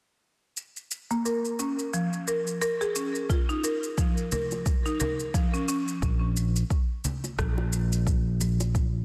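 An overdriven electronic shaker and rim click open this mystical, earthy organic downtempo cut in Bb minor at 88 BPM with a swung 16th feel at 0.6 s, soon joined by up-front arpeggios from a buzzing, woody marimba treated with a low-pass filter sweep and digital delay, then a deep, overdriven electronic kick at 3.3 s, ringing, close congas and bongos, and finally a dark, round fretless electric bass with sidechain pumping from 6.0 s, the mix sitting in a concert hall reverb under a dense, heavily limited modern master.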